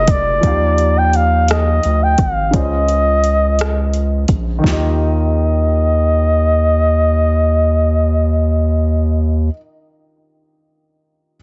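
A breathy, dark flugelhorn carries the melody up front in a jazz style, with vibrato, scooped notes and a touch of delay, over a slow, sensual and tender six-eight R&B groove at 57 BPM in Eb major. A round, deep analog bass with a nasal edge sits forward beneath a warm grand piano that moves through Ebmaj9, Dbmaj9 and Ebadd9, while a produced electronic kit of soft kick, fat snare, rim click and metallic hats plays until 4.8 seconds. Heavily compressed into a muffled, radio-like sound with light reverb and small room ambience, this excerpt ends with the piano playing alone from 9.5 to 11.4 seconds.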